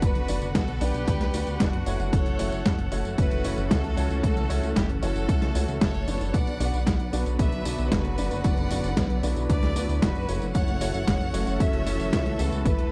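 A straight 4/4 groove is driven by a punchy, overdriven electronic kick and a gritty, dusty sampler-style kit of hi-hat, snare and tambourine, while a glossy, chorused synth bass sits up front in this nostalgic, bittersweet italo disco piece. Over muted, veiled string-section chords and warm grand piano stabs, a clear chamber violin section carries an intense, vibrato-laden melody touched with tape echo. The dry, close 1970s-style sound holds every part in place throughout this brief cut from a longer piece, set on a single minor chord.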